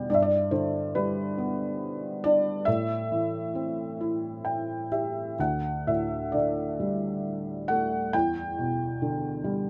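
A felt-muted upright piano opens alone and carries this peaceful, lyrical classical fragment in G major, moving in a rubato 6/8 at roughly 41-48 BPM in dotted quarters, with its tuning set to A4 = 445 Hz. Its soft, mellow, intimate tone sits up front, reaching from D2 to G5 as the harmony drifts from G through Am7 and Dsus4 to Em7, with a brief fill between 4.0 and 5.4 seconds. A moderate booth ambience with a short decay keeps the sound close and gently warm throughout the 9.7-second excerpt.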